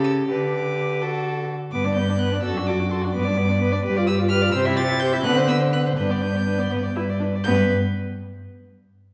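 Heard from further back in a reverberant recital hall, this spirited, lively excerpt from a quick classical-period movement in 6/8 sets a close, rich first violin singing the high melody over a reedy second violin line, a smooth-topped viola accompaniment with light vibrato, and an up-front cello bass, each bowed by a single player with gut-string, period-style tone.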